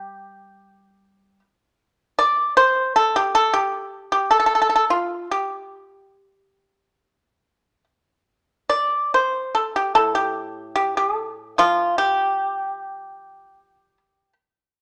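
A solo pipa, played with fingerpicks, carries this elegant, contemplative Chinese traditional passage from 0.0 to 14.3 seconds. Its acoustic tone is mellow yet percussive, sitting dry and up front, and it ranges from A2 up to D5. The pulse hovers around 70-78 BPM in 4/4, though the rubato feel lets the phrasing breathe freely. A moderate, large studio reverb surrounds the recording and lends the space a sense of depth. Taken from a longer piece, the passage stays within a single unhurried section.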